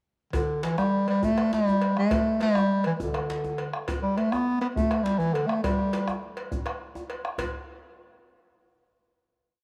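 Set in a straight 12/8 at 136 BPM, this short, earthy and festive West African drum-ensemble piece opens at 0.3 seconds with a metallic cowbell bell pattern and a medium-tuned djembe with metal rattles and hard hands, both in a lively room, alongside a round, vintage-toned bombo. From that same moment, a breathy bass clarinet sits up front and plays a solo in G major pentatonic, shaping jazz-style call phrases from a motif with vibrato and a punchy subtone. The clarinet finishes at 6.2 seconds, the percussion carries on to a final hit at 7.4 seconds, and a moderate plate reverb gives the whole piece its sense of space.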